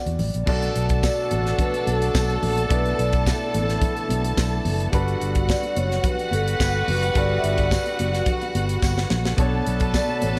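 Bathed in studio reverb, this sultry, danceable disco excerpt in B minor at 108 BPM rides a dry, polished funk drum kit and a punchy, amped fingered electric bass, with a ringing soft-mallet vibraphone carrying the melody over a clear, boxy grand piano and mellow French horn chords in the background, lush bowed strings and distant, roomy pop-style horn stabs arriving at 0.5 seconds with analog delay, very quiet high-tuned congas and a jingly tambourine adding percussion, and a drum fill at 8.8 seconds as the harmony moves from Bm7 to Gmaj7 and back.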